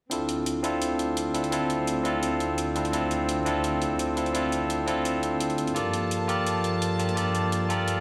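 A straight 4/4 pulse from a gritty, compressed, sampler-style electronic hi-hat underpins this soulful, melancholic slice of liquid drum and bass, where a bright, barky tine electric piano, lightly overdriven through a combo amp with digital delay and a filter sweep, sits up front beside a dark, floating studio string section bowed sul tasto with a soft attack, the harmony moving from Dm9 to Gm9 at 5.8 s inside a plate reverb and the big, bare-room ambience of a large studio.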